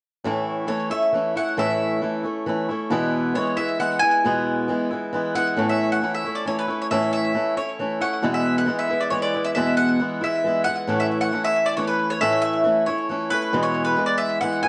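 A round, double-strung mandolin carries the melody from 0.7 seconds, its picked notes sitting up front with a slapback echo in this jangly, nostalgic rock piece in 3/4 with a straight feel. Beneath it, a dark, boxy, picked swing-style acoustic guitar supplies the accompaniment from 0.2 seconds, with audible finger squeak, as the harmony moves between A and E and a new section begins at 5.6 seconds. A moderate studio reverb surrounds both instruments, and the top end stops at about 10.3 kHz in this excerpt cut from a longer piece.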